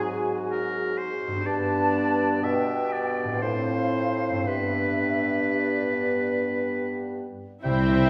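Heard from further back in a reverberant concert hall, this tender, lyrical passage from a slow romantic orchestral movement drifts in 3/4 at roughly 56-64 BPM with a flexible, rubato feel. A present, bright oboe, an airy flute ensemble with crisp attack, and a mellow clarinet set in the background weave secondary lines, while a distant bassoon supports them from below. A roomy French horn section holds sustained chords, and a ringing, fingerpicked concert harp spins arpeggios as the harmony moves through Ab7, G, F/A and back to G. At 7.6 s the muted strings arrive: veiled violins take the melody with a second violin line behind them, rich violas fill in, and smooth-topped cellos join a lush double bass section up front to carry the bass. Vibrato colors the bowed strings and the flutes, lending the closing moments a dark, hushed glow.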